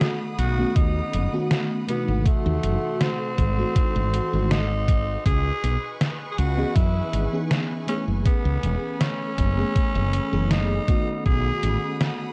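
A breathy, raspy tenor saxophone opens this woozy, melancholic vaporwave fragment at once, its growling jazz-style solo line trailed by tape echo and set over a lush, dreamy FM electric piano layered with a soft pad and thickened by ensemble chorus. A bright studio string section holds bowed, vibrato-rich chords further back, while a detuned 8-bit drum machine sits up front with hi-hat and a medium-tuned snare that sounds re-recorded in a small room. At 0.4 seconds a dark, round fretless bass joins, hollow-bodied and direct, and by 0.8 seconds a thumpy, sampler-style electronic kick is driving the straight 80 BPM pulse in 4/4. The harmony drifts through B7, G#7b9b13, C#m7, F#m11 and G#7(no3) in C# minor, tuned slightly flat to A4 = 435 Hz. Digital ambience and a cassette-tape haze wrap this short cut from a longer piece.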